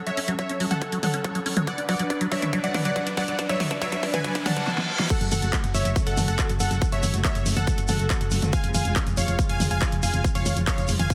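A straight 4/4 pulse at 140 BPM drives this emotional, euphoric uplifting trance excerpt in F# minor, where an overdriven, punchy kick and a big-room kit with a huge snare, hi-hat, handclaps, toms and crash carry a drum fill through the build-up. Over it, a squelchy, resonant acid bass plays arpeggios with a filter sweep beneath sustained, intimate bowed strings, an airy, detuned supersaw stab melody with dub echo, and a very quiet riser and reverse cymbal. The drop lands at 5.1 s, after the acid bass has stopped, as a round, dark FM bass and a grainy tube shaker in the background enter, the chords moving from F#m to C#/E#, with sidechain pumping on the strings, stab and bass, all set in a lush hall reverb with a heavily compressed, radio-like sound.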